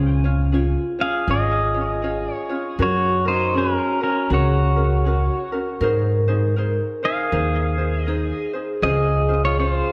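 Pedal steel guitar carries the melody up front, its electric, twangy tone shaped by fingerpicks, slide and volume swells, with a digital delay trailing each phrase after it enters at 1.0 seconds. This languid, dreamy Hawaiian piece, cut from a longer performance, moves at 80 BPM in 4/4 with a swung eighth-note feel in Db major. Beneath it, a pizzicato upright bass with gut strings sits prominently, its woody, thumpy low end anchoring the harmony. A vibraphone played with soft mallets adds a mellow, ringing second line with a medium motor vibrato, while a light, fingerpicked ukulele supplies gentle acoustic accompaniment. The chords drift from Db through Gbadd9 and Abadd9 to settle on Dbmaj7 at 8.8 seconds. A moderate recital hall reverb softens the blend, and lossy compression artefacts are audible in the sound.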